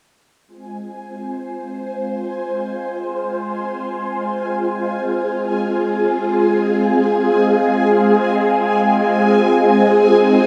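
A phased string machine leads this fragment of cosmic, mysterious space music, holding swirling sustained F minor chords up front, with ensemble chorus and phaser giving its bright sawtooth tone a vintage, evolving character. Drifting in free time, the chords sit between Ab3 and C5 and fade in gradually from 0.5 to 10.5 seconds. Alongside it, a quieter bubbling texture high at Ab5 steps through random, resonant filter changes. Its detuned sawtooth sound has a soft attack, a long release, and its own chorus and built-in reverb. That texture fades in over the same span. A huge, wet ambient reverb with a 7.4-second decay surrounds the whole piece, giving the short passage a vast, floating sense of space.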